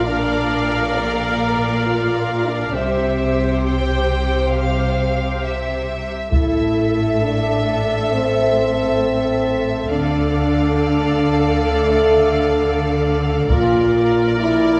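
A lush, reverberant orchestral sound opens this short cut from a longer cinematic film score, dark and heroic in mood, moving at a slow 67 BPM in 12/8 with a straight feel, in A phrygian. Smooth, even violins carry the melody over a second violin line that sounds focused and distant, while the violas fill in bowed accompaniment with vibrato. A roomy French horn section holds sustained chords, and bowed cellos and double basses anchor the low end with rich, lush tone. A taiko ensemble struck with heavy sticks punctuates the music twice, entering at 6.3 seconds and again at 13.5 seconds. The harmony moves through Bb, C, Am and Dm before returning to Bb, all set in the hall-like space of a scoring stage.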